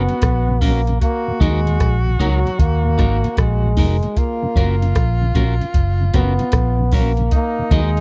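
A round, punchy fingered electric bass sits up front in this sunny, uplifting roots reggae excerpt with swung sixteenths, as a bright trombone carries the melody over a breathy, whispered tenor saxophone second line and a twangy, slightly broken-up electric guitar, all three touched with tape echo, while a mellow tonewheel organ with chorus vibrato and slow rotary speaker sits in the background and a soft vintage rhythm box supplies deep kick, metallic hi-hat and rim click over F# and D#m chords in a dry, close 1970s-style studio sound.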